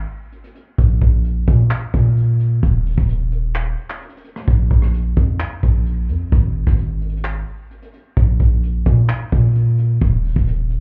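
A hard-hitting 808-style bass opens this eerie, menacing hip hop and trap excerpt, its heavy sine tone with a noise layer striking with a fast attack and then decaying. At 0.3 seconds a vintage brush drum kit joins, bringing handclaps, hi-hat, rim click and a punchy kick drum in a half-time feel over a 4/4 metre. The drums sound acoustic and lo-fi, played with brushes in a small room, with a muffled, rolled-off top. Both the bass and the kit sit up front in the mix. The whole recording carries little reverb of its own, yet it is heard as if through a wall, with a club reverb and EQ colouring it. Both parts continue together to the cut at 10.8 seconds, as this fragment is taken from a longer piece.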